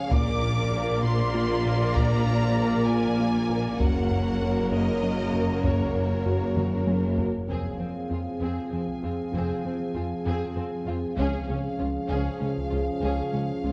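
A lush, bowed violin section carries the melody high above this brooding, relentless stretch of hybrid orchestral and electronic film score, which moves in a slow, straight six-eight and is cut from a longer piece. A second, more distant and focused violin line runs beneath it. In the background, violas, cellos and double basses fill out the low strings, mellow French horns hold soft-edged chords, and a deep, nasal analog pad with chorus sustains the harmony through a Bb, Gb, Fm and Db progression. A rubbery, hollow square-wave bass riff bounces under a very quiet, tight sequenced synth arpeggio with phaser shimmer. Hard-stick taiko drums pound from a small room, rolling into a fill from 6.6 to 7.5 seconds that leads into the second section, and a barely audible cymbal swell arrives at 13.0 seconds. The mix sits in a large scoring-stage reverb and carries the worn, warbling pitch drift of old cassette tape.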